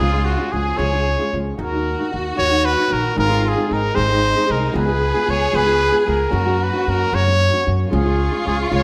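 A clear trumpet with light vibrato leads this romantic, festive mariachi excerpt in 6/8 at 76 BPM, backed by a lush bowed violin section, a thumb-plucked flamenco guitar and a woody pizzicato upright bass up front, while a dark, distant violin section adds soft sustained chords from 7.9 seconds, all in a moderate recital hall reverb.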